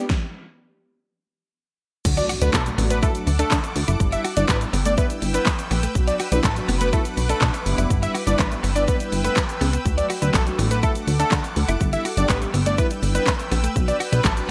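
Dance-pop with an upbeat, euphoric lift and a bright 1980s-style digital sheen, this excerpt opens with a brief build-up where mellow, round synth brass and a clean, picked electric guitar riff with analog chorus carry on over a stop in the drums. At 2.1 seconds the drop lands with a very quiet electronic impact, and a punchy, up-front pop drum kit with fat snare, handclaps and gated reverb drives alongside a funky, plucky analog bass and a grainy tube shaker. Above them a fat, nasal analog lead with vibrato, chorus and delay sings the melody, while a shimmering, ethereal pad enters at 2.8 seconds with sustained chords over a D, G6 and Bm progression.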